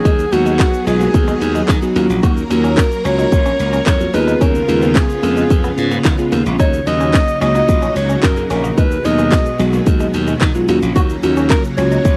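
A home cassette recording with light reverb carries this confident, bittersweet dance-pop excerpt at 110 BPM in 4/4, where a clear alto saxophone with pop-style vibrato and tape echo sings the melody over chords moving from Abm7 through Gbmaj7, Db7/Eb and Ebm7. Up front, a house drum kit pairs a punchy kick and cracking snare with warm hats, handclaps and shaker, while a bright, direct slap bass pumps along beneath. In the background sit glassy digital keys with chorus and a fill at 1.4 seconds, a shimmering vintage string machine of violins with sidechain pumping, a twangy, scooped clean electric guitar riff, and a grainy egg shaker.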